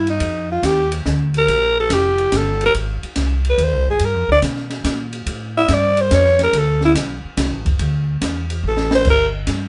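The recording has the close, lightly reverberant sound of a small band playing live in one room, with its highs stopping at 10.5 kHz. This moody, swinging fragment of small-group swing and bop jazz moves at 142 BPM in a lilting 3/4, set in D minor with a swung eighth-note feel. Up front, a close-miked alto saxophone carries the melody as a solo, its growling, raspy tone full of breath, subtone, scooped notes and light vibrato. A woody pizzicato upright bass with steel strings also sits forward, while an open acoustic drum kit plays with dark cymbals, a high-tuned snare and a boomy kick. The harmony passes through chords such as Ebmaj9, Gm7, F69 and Dsus2 before a drum fill from 8.6 to 9.1 seconds leads to a Gm chord, cut from a longer piece.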